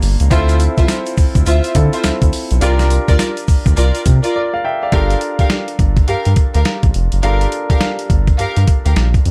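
This short excerpt opens with a round, dark analog bass sitting up front beside a gritty, compressed sampler-style drum kit, its thumpy kick, medium-tuned snare, hi-hat and tambourine driving a punchy, slick new jack swing groove at 104 BPM in G dorian with a 62% swing on the 16ths. A clear concert grand piano plays accompaniment with an intimate, polished tone and audible action noise, while a grainy, band-limited tube shaker sits in the background until 4.3 seconds. From 0.3 seconds a lush, bowed studio string section adds focused stabs with vibrato and a smooth top, echoed by digital delay. The harmony moves from Dm9 to C9sus4, then a brief break at 4.3 seconds leads into a second section that settles on Gm7 at 4.9 seconds. The whole R&B groove is framed by a studio ambience.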